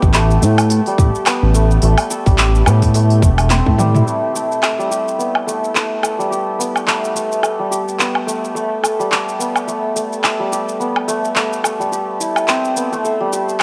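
Organic downtempo in A minor at 107 BPM, tuned to A4 = 435 Hz, with a swung 16th feel: this hypnotic, meditative piece sets up-front, hammered santur arpeggios, ringing and shimmering through a low-pass filter, delay and shimmer reverb, over a layered deep house kit of smooth hats, handclaps, shaker, toms and woodblock in a moderate echo-chamber space. At the start, an up-front, gliding sawtooth-and-square synth bass with portamento and sidechain pumping joins a tight, tape-warm electronic kick re-recorded in a large room. A drum fill from 3.5 s leads both out by 4.0 s, and the chords move from Am7 to Gadd9 at 4.1 s, leaving the santur and kit to carry on.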